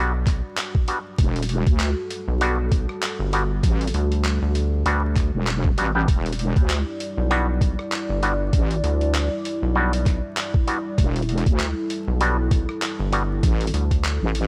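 Glitch hop at 98 BPM in E minor with a swung, playful and funky feel, this short cut holds an Em9 chord as a moody sawtooth pad with chorus, phaser, sampler grit and sidechain pumping sustains beneath twangy auto-wah clav stabs with tape echo, a rubbery, hollow square bass, a thumpy pitched-down electronic kick up front, a tape-warm boom bap kit of handclaps, hi-hat and rim click, and a heavy, saturated wobble bass entering at 1.2 seconds, all in a dry, gritty hardware sound with vinyl crackle.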